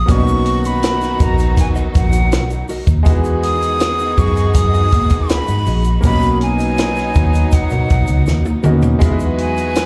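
Heard through a club's PA at a live gig, this short cut from a longer piece sounds fairly dry, with only a touch of room ambience. It is lush, cinematic 1970s-style soul at 81 BPM in a straight 4/4, moving between Bmaj7 and Emaj9. A breathy metal flute with a soft attack, straight tone and lifted highs carries the melody. Beneath it, a clear grand piano plays accompaniment and a clear, jazz-style horn section adds stabs with light vibrato; flute, piano and horns all carry a slapback echo. A distant bowed string section sustains warm chords with vibrato and portamento in the background, while a dark, compressed electric guitar plays a very quiet fingered riff. Up front, a round, foam-muted vintage bass and a compact, dry cocktail kit with a high-tuned snare and tight kick anchor the groove, joined by a grainy egg shaker, and the drums play a fill from 8.3 to 9.0 seconds.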